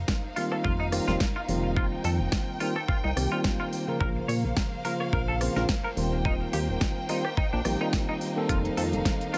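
This sunny, groovy nu-disco excerpt opens on lush, bowed violin section chords with smooth vibrato and a sidechain pumping effect. Beneath them sits a glossy, detuned synth bass of pulse and sawtooth tones, chorused and saturated with a mellow filter pluck. Almost at once a gritty, thumpy overdriven electronic kick and a layered pop kit with a fat snare, rim clicks and crisp hi-hats set a 107 BPM groove in 4/4 with a light swing on the sixteenths. At 0.4 seconds a clean tine electric piano, low-pass filtered through a combo amp, enters alongside a bright, twangy picked guitar riff. Both carry tape echo, and the guitar also has analog chorus. The harmony moves from F7sus4 to Bbmadd9 and Eb6 before returning to F7sus4, in a dry, echo-heavy mix with the kick and bass up front.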